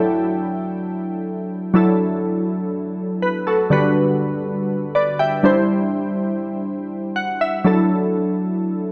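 Glassy digital keys open this short, glossy and uplifting pop excerpt at 122 BPM, playing alone from start to finish with an airy, detuned, chorused tone, fast attacks and decaying notes set up front. The harmony moves from Dadd9 through Gmaj7/D and Cadd9 before returning to Dadd9 at 7.7 seconds, and a brief synth keys fill arrives at 6.9 seconds. A lush hall reverb with a long tail surrounds the part, adding a spacious sheen.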